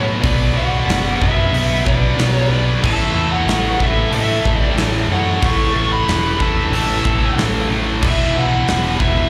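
A straight 4/4 pulse carries this heavy, aggressive hard rock fragment, cut from a longer piece and heard as a live gig through the venue's PA with a touch of club reverb. The huge arena drum kit comes in at 0.2 seconds, up front and pumping, with bright cymbals over hi-hat, a medium-tuned snare and a punchy kick, all in a hall-like space. Beneath it, a growling picked electric bass, amped and overdriven, sits prominently, while three rhythm guitars hold the riff in the background: a biting, double-tracked overdriven guitar with spring reverb and slapback echo, a heavy high-gain guitar with slapback, and a scooped high-gain guitar. On top, a dark, bluesy lead guitar carries the melody through distortion and analog delay, joined by a fuzzy octave-fuzz second line set further back with slapback echo. The harmony moves from B minor to A5 at 2.8 seconds and then to E5 at 8.0 seconds.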